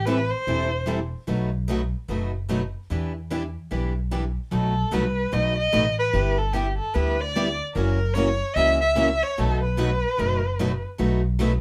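Bittersweet and virtuosic, this brief cut from a longer jazz manouche piece swings at 148 BPM in 4/4, with a woody pizzicato upright bass up front under two picked steel-string acoustic guitars, one warm with finger squeak and the other bright and boxy, while a single expressive bowed violin sings with vibrato and portamento, sounding briefly at the start and returning at 4.5 seconds over changes such as B7, G6 and F#7 in light reverb.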